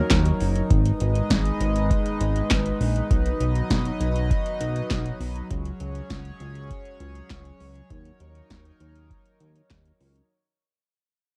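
Nocturnal and melancholic, this short synth-pop fragment, cut from a longer piece, moves in a straight 4/4 and fades out across its full 10.3 seconds. A chorused pulse-width pad holds sustained chords with a slow attack, its shimmering retro tone built from pulse, sawtooth and square waves over a sub octave. Beneath it, a glossy, dark chorused synth bass blends pulse, sawtooth and sine waves, with a fast attack and a filter sweep. An electro analog drum machine of handclaps, hi-hat, deep kick and punchy snare sits up front with overdrive and a cassette-tape grain, its metallic hats, snare and claps carrying a short room sound. The chords move from Ebm7 through Abm, B and Dbsus4 before returning to Ebm7, all framed by light reverb and a digital ambience with the feel of a home recording on cassette.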